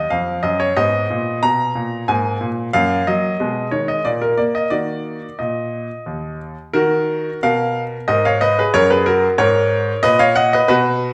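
A clear, intimate grand piano sits up front in a wet recital hall, its natural tone carrying audible action noise beneath a reverberant tail. This dramatic yet elegant classical-period sonatina, cut from a longer piece, moves at 92 BPM in a straight 3/4 in Eb minor, with the solo piano ranging from Eb2 to Bb5. Its harmony drifts through Abmadd9, Absus2 and inverted Eb minor and Ab minor chords, pauses on an unharmonised moment near 4.0 seconds, settles on Eb minor, and then turns toward Gb in the closing passage from 6.7 seconds.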